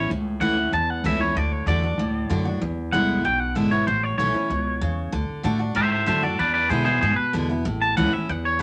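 A straight 4/4 rockabilly groove at 190 BPM drives this upbeat, rowdy excerpt in A major, cut from a longer piece. A clean, twangy electric guitar takes a bright, scooped solo up front for the full 8.6 seconds, backed by a full-bodied jumbo acoustic guitar with fresh strings and audible finger squeak, while a woody, thumpy pizzicato upright bass anchors the low end. The chords cycle through A, D and E7 twice in a moderate studio reverb.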